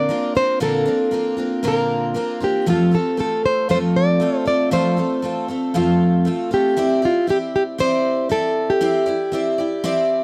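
A shimmering, octave-doubled twelve-string acoustic guitar picks a full-bodied accompaniment through Bbadd9, F and Cadd9 as a fingerpicked classical nylon-string guitar with fresh strings and audible finger squeak carries the melody up front, giving this easy-going, heartfelt pop excerpt a dry, close 1970s-style studio sound.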